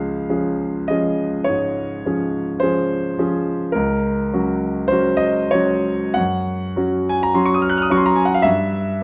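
A warm grand piano carries this brief excerpt alone, a romantic nocturne in the classical tradition with a serene, dreamy mood. The tempo sits slow, around 45-54 BPM in 4/4, and the playing breathes with a flexible rubato. The piano spans from Db2 up to Gb6, its tone present and polished, placed up front by close, detailed microphones. Harmony rests on Db, moves to Gb over a Db bass at 3.7 seconds, and arrives at a G5 chord at 8.5 seconds. A moderate large-studio reverb lends a gentle halo around the instrument across these nine seconds cut from a longer piece.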